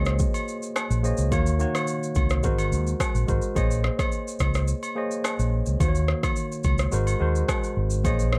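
Mellow and hypnotic, this afrobeats passage, cut from a longer piece, moves at 107 BPM in a straight 4/4 in Bb minor, tuned to A4 = 435 Hz, cycling through Bbm11, Ebm7 and Ab9 in a dry, close-sounding mix. A worn, slightly out-of-tune tine electric piano carries the chords up front beside a dark, round, punchy fingered electric bass, while an electronic afro-pop drum kit with a deep, overdriven kick, rim click and shaker sits up front with a small-room character. Agogo bells and woodblock add an acoustic, live-room texture low in the mix from 0.3 s.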